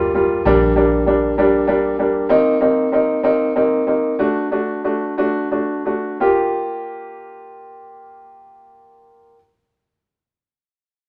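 In a straight 6/8 lilt at 57-65 BPM counted in dotted quarters, this melancholic, aching G minor pop fragment pairs a clear, woody upright piano sitting up front in the accompaniment with a dark, foam-muted, round vintage electric bass that drops away at 2.3 s, as the pace slows until 6.2 s through Bb6, Cm7 and D toward Gm7 and the piano carries on alone to 9.3 s, all set in a moderate stone-room reverb with the rough, tube-saturated feel of a rehearsal-room recording.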